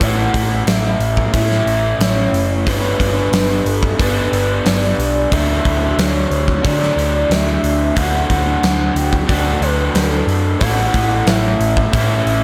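Shoegaze-leaning dream pop rock with a wistful, hazy mood, this short excerpt moves at a steady, straight pace while a raw, double-tracked garage guitar riff sits up front, overdriven and lo-fi with a subtle chorus, over a dark, round hollow-body bass that is picked and punchy. A gated 80s kit adds a tight kick, medium-tuned snare and hi-hat with a big, airy, polished room sound, as a smooth, gliding portamento lead with vibrato floats above through chorus, phaser and tape echo. The whole mix is soaked in a lush hall reverb, and the chords drift from A to G to Dadd9 and back to A at 10.6 seconds.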